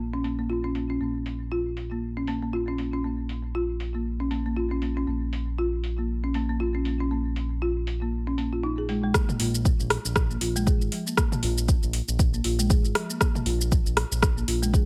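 A swung 16th-note groove in 4/4 at 118 BPM drives this earthy afro house excerpt in Bb minor, carried by a deep house drum kit of metallic hats, rim clicks, shaker and toms, each softened by low-pass filtering and placed up front. A smooth, dark synth bass of sawtooth and square waves glides with portamento beneath woody, rustic marimba arpeggios played with soft mallets; both pump against the sidechain, and the marimba's round tone carries a digital delay. The harmony moves from Bbm to a chordless stretch at 5.1 s, then at 9.1 s a deep, tape-warm electronic kick arrives for the drop over Bb5 and Absus2, all with little reverb.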